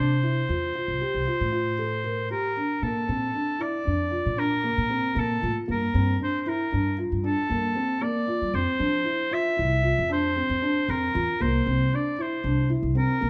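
A clear, distant oboe carries the melody over felt-muted upright piano arpeggios, soft and dark with audible action noise, and a woody, thumpy pizzicato upright bass in this hypnotic, pensive excerpt of contemporary chamber music in 11/8 at 231 BPM, moving from Csus4 through Bbmaj7, Gm7 and F5 to C7 in a moderate recital hall reverb.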